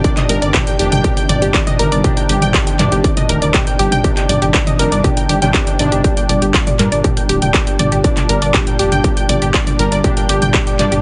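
The recording has a heavily compressed, radio-like sound in a digital ambience, with its top end cut off above 10.7 kHz. This short cut from a longer melodic techno piece feels cinematic and driving in a straight 4/4, moving from Cmadd9 to Gm at 6.0 seconds. A distorted, layered electronic kick sits up front with a techno kit of handclaps, warm hi-hats and toms, both re-recorded in a large room; the kick drops out at 10.6 seconds. A deep, rumbling, detuned saw bass with a beating, sustained tone joins at 0.3 seconds and pumps against the sidechain. Above it, a lush, punchy unison pluck plays arpeggios with a wave-folded, decaying edge, a filter sweep, cassette tape colour and tape echo. Bold, nasal analog synth brass stabs, fat and shaded with chorus and vibrato, also carry a filter sweep, tape echo and sidechain pumping.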